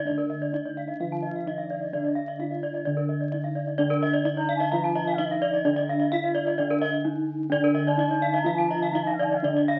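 A bright, horn-mallet bronze metallophone ringing its arpeggios up front leads this shimmering, brilliant gamelan excerpt in D pelog at 129 BPM, joined by a second, airy arpeggio metallophone, a mellow metallophone melody, a dark, smooth metallophone accompaniment and round, beating bossed gongs holding the bass in the background, while from 1.2 seconds a distant bass bansuri adds a pure, expressive second line with vibrato, all heard through moderate reverb and the crackle of a very old 78 rpm record.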